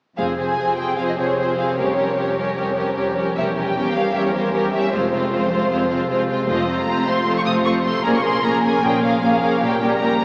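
From 0.2 seconds, a symphony orchestra's strings and concert harp enter together in a restless, urgent romantic movement in F minor at 152 BPM, its rubato pulse moving through chords such as Fm, Edim7 and Bbm7. One bowed violin section carries the melody with vibrato and a smooth top, while a second, up-front violin line glides with portamento over lush, even violas and ringing, fingerpicked harp arpeggios; cellos and double basses hold a rich bass in the background until the basses stop at 10.0 seconds. Cathedral reverb places the music in a vast, echoing space, though it comes through as if from a small speaker.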